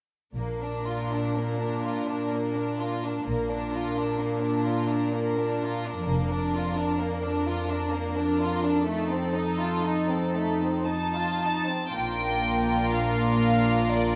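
A triple metre moves at a rubato 55-65 BPM, giving this serene, lyrical slow movement for symphony orchestra in Bb major a breathing, unhurried pulse. The violins carry the melody with a floating, smooth-topped sound, while a second violin line sits just beneath, both bowed softly over the fingerboard. Dark, intimate violas add accompaniment with a light vibrato, and the cellos form a pure, up-front bass line. The double basses lend a rich foundation before dropping out at 7.0 seconds and returning at 11.9 seconds, as the harmony settles from Bb through Bb/F and F7 back home to Bb and a new section begins. A moderate scoring-stage reverb surrounds the ensemble, and the passage is cut from a longer piece.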